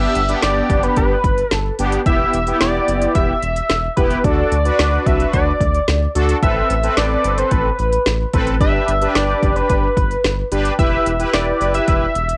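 This short excerpt has the hazy, tape-worn sound of a home cassette recording, set in a moderate studio ambience with a short room decay. It is upbeat yet wistful synth-pop in G major at 110 BPM in a straight 4/4, moving through G, Em, D and Amadd9 before returning to G and Em. A bright, retro, octave-doubled sawtooth lead carries the melody between B4 and E5, its detuned, plucky filtered tone thickened by chorus, vibrato and plate reverb. Beneath it, brassy analog synth brass sustains fat, detuned chords with a filter sweep, also bathed in chorus and plate reverb. A round, dark analog bass, blending sawtooth and sine and colored by tube saturation, holds down the low end from E1 to D2. A layered deep house drum kit enters at 0.2 seconds with a deep kick, woody snare and smooth hi-hats, sitting up front in the mix alongside the bass and brass.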